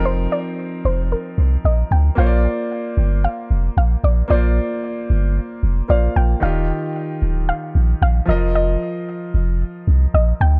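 From the first beat, a soft, round, warbling pluck carries the melody with chorus, plate reverb and tape echo over a warm concert grand piano and a deep, punchy sub bass with a pitch-drop attack up front, in a joyful, breezy afrobeats groove at 113 BPM in Bb major with a lightly swung 16th feel, moving from F7sus4 to Bbadd9 at 2.2 seconds and on through Ebadd9 in a dark, dry mix cut from a longer piece.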